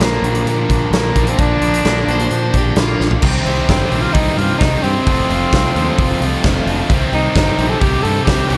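A distant, roomy tenor saxophone with light vibrato carries the melody through this driving, gritty classic rock excerpt. Alongside it play an up-front, huge arena drum kit with a fat snare and punchy kick, a growling overdriven fingered bass, and two picked, overdriven guitar riffs in the background. An overdriven slide guitar adds a brief second line at 2.1 seconds, and after a drum fill at 3.0 seconds a very quiet double-tracked fuzz guitar riff and a shouting tonewheel organ with slow rotary speaker enter at 3.2 seconds, all in light studio reverb.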